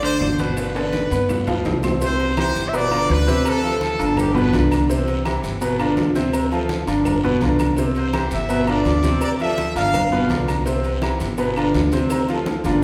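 Salsa at a brisk 166 BPM, sunny and joyful, cut from a longer piece and heard in a reverberant hall. A brilliant, up-front concert grand piano carries the accompaniment over a dark, thumpy upright bass played pizzicato on gut strings, while a tight, bright trumpet section with light vibrato states the melody until 4.7 seconds and returns at 8.0 seconds over a cycling C, Dm7 and G7 progression. Ringing low-tuned congas, metal-shell timbales with agogo bells, distant round bongos with cowbell, raspy guiro, grainy maracas and faint woody claves fill out the percussion, with drum fills punctuating the groove.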